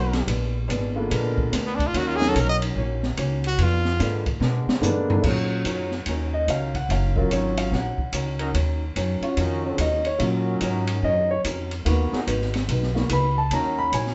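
Big band swing in Eb minor, this sultry, brassy passage from a longer piece moves at 145 BPM in 4/4 with swung eighth notes. A bright, forceful trumpet takes the opening solo up front, its scooped notes and vibrato ringing over the band until 4.3 seconds, and a drum fill carries the music into the piano's turn at 5.2 seconds. The concert grand then solos through to the end, intimate and polished, with deep bass, long sustain and audible action noise. Underneath, the woody, thumpy upright bass sits forward on gut strings, the clean, picked hollow-body archtop guitar adds compressed chords at a lower level, and a tight trombone section enters at 1.1 seconds with smooth sustained harmony in the background. The acoustic kit sounds like a small room, pairing dark cymbals with a high-tuned snare and a boomy kick. The whole band plays live together in a reverberant studio, with a mellow top end and harmony that circles around Bb7b9, Ebm7 and Abm7.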